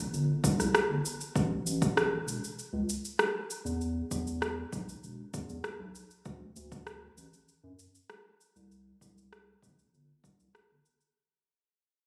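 A straight 4/4 groove of punchy, overdriven electronic kick, layered electronic cabasa and rim click sits up front from the opening moments, with the kick arriving at 0.4 seconds and the percussion carrying on to 11.1 seconds, all bathed in studio reverb. Underneath, a round, deep and dark analog bass with a fast attack and sustained notes holds the low end in a smooth, warm sunset chillout mood. The whole fragment, cut from a longer piece, fades out across its length and has the lush hall ambience and club reverb of a phone recording made in the room.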